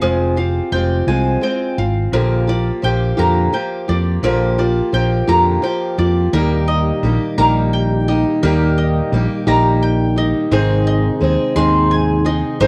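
An old ladder-braced acoustic guitar anchors this indie folk excerpt, its boxy picked accompaniment sitting up front beside a round, dark fretless electric bass, while a bowl-back mandolin spins arpeggios from its doubled strings. The pulse is a lilting 6/8 with a straight feel, and the mood is warm and uplifting, moving from Fmadd9 to Bb6 before settling onto Eb and Ab. At 6.3 seconds a very quiet tonewheel organ joins with soft, flute-like sustained chords, its chorus vibrato, key click and slow rotary speaker adding motion as the arrangement builds. The guitar and mandolin carry the character of cassette tape, and light reverb rounds out a homemade recording that carries a faint mains hum.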